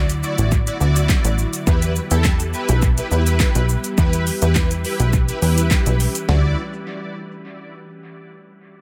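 A funky, nasal analog bass with a quick filter pluck sits up front in this upbeat, carefree dance-pop excerpt, moving in a straight 4/4 at 104 BPM in D major, tuned to A4 = 438 Hz, and pumping under sidechain. The electronic pop drum kit is just as forward, with a punchy kick, fat snare and metallic hats layered with handclaps, shaker and toms, all overdriven, re-recorded in a small room and thrown into dub echo. Above them a big, bold polysynth of detuned sawtooths plays bright accompaniment with ensemble chorus, its own dub echo and sidechain pumping. Deep in the background a glassy, ethereal FM pad holds dark sustained chords with a slow attack, a moving notch, chorus and built-in reverb. The harmony moves from Dadd9 to Em and returns to Dadd9 at 6.3 seconds, all within an echo-heavy digital ambience. The drums drop out at 6.4 seconds, and the other parts stop at 6.6 seconds.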